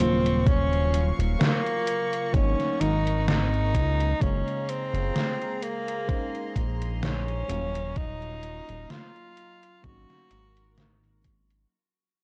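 A tenor saxophone with light vibrato and scooped notes carries the jazz-style melody up front through a tape echo, drifting over a faded, woozy vaporwave groove cut from a longer piece that fades out from 1.7 s to the end. A mellow FM electric piano with phaser and subtle chorus, a soft, floating string section in the background and a glossy, dark, wave-folded synth bass fill out the harmony around Ebm9, Ab9sus4, Gbmaj9 and Bbm11. A gated, overdriven drum machine plays hi-hat and snare with gated reverb, joined at 0.5 s by a thumpy, overdriven electronic kick, all heard through a gritty cassette-tape sound.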